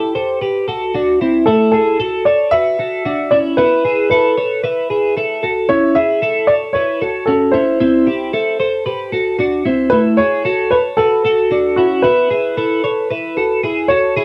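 A straight 4/4 pulse at 114 BPM carries this nostalgic yet bright indie pop passage, cut from a longer piece and moving through Cadd9, Dadd9, Esus4 and A. An upright piano carries the woody, long-sustaining melody up front, while a clean, twangy twelve-string electric guitar picks compressed arpeggios beside it with a subtle chorus, both playing for the full 14.2 seconds. Wet studio reverb and a dark production surround the pair.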